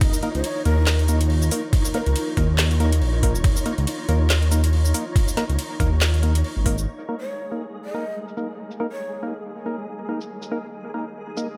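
Deep dubstep with a dark, meditative half-time swing, opening on a drop where a rumbling, detuned saw bass and a muffled, thumpy kick sit up front until both fall away near 6.9 s, while an overdriven garage kit with a woody snare, metallic hats, handclaps, shaker and crash carries on beneath a moody analog pad in the background. A hollow, organ-like stab with dub echo runs throughout and takes a filter sweep in the closing stretch, as a flickering granular texture hovers under everything with its own reverb. A breathy, close-miked shakuhachi with vibrato and chiff sounds two short echoing phrases, the second arriving at 7.2 s, in this excerpt from a longer piece.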